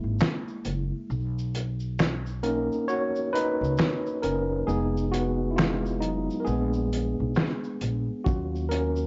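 Lo-fi hip hop with a nostalgic, hazy mood, this short excerpt moves at a slow 67 BPM in 4/4 with a swung sixteenth-note feel. A tine electric piano carries the spotlight from the start, its worn, slightly out-of-tune tone lightly overdriven and softened by cassette tape and a low-pass filter, as if heard through built-in speakers. Beneath it, a pizzicato upright bass adds a woody, steel-strung low end, while a cloth-damped drum kit enters at 0.2 seconds with a fat snare, tight kick, hi-hat, shaker and handclaps, sounding muffled, gritty and saturated in a small room. The harmony drifts through rich extended chords, opening on Gb9, passing through Bmaj9, Fm7b5 and Bb7b9, and landing on Ebm9 at 8.3 seconds. Light reverb and a warbling old-tape character with gentle pitch drift and a rolled-off top give the whole mix its dusty, lived-in sound.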